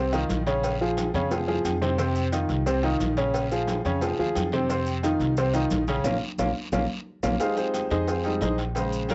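A cassette home recording with a dull top end and light reverb frames this fiery, driving salsa fragment, cut from a longer piece, moving at 177 BPM in 4/4 with a straight feel in F minor. Up front, a bright upright piano with a polished, brilliant tone and long sustain carries the accompaniment over chords shifting between F5 and Bbm7, while a dark, woody pizzicato upright bass on gut strings thumps beneath it. Behind them sit ringing, medium-tuned congas in a distant large room, a metal-shelled pairing of agogo bells and timbales heard close and dry, and a round, low-tuned cowbell kept very quiet. Grainy, mellow maracas and a raspy guiro, the latter joining at 0.3 seconds, add texture around the beat. Drum fills arrive at 1.1 and 6.0 seconds, the second landing with a band accent, before the piano takes a short solo from 7.4 seconds over an Fm7 chord to close the fragment.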